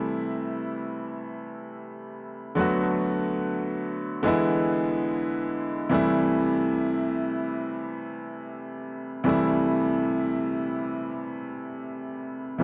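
A clear baby grand piano plays alone in free time, moving through Am7, Bm7 and E7 before settling back on Am7 at 5.9 seconds, in a smooth, cinematic soul vein. Sitting up front with a natural tone and long sustain in its lower and middle register, the piano is set in a moderate plate reverb within a dark, warm production. This 12.6-second passage is cut from a longer piece.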